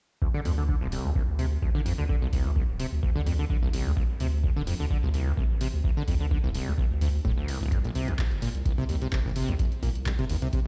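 A squelchy, resonant sawtooth acid bass sits up front with a bright filter sweep, chorus, overdrive, cassette-tape grit and digital delay, riffing through this trippy, hypnotic acid house fragment at 128 BPM in D minor with a light 16th-note swing. Beneath it a deep analog-style electronic kick drives the 4/4 pulse, a thick, saturated sine sub bass pumps against it from 0.5 s, and a punchy, tape-warm drum machine adds handclaps and hi-hat. The whole track plays through a big system in a bare stone room, its reverb giving an echoing space as the harmony moves from D7 to C7 at 7.7 s.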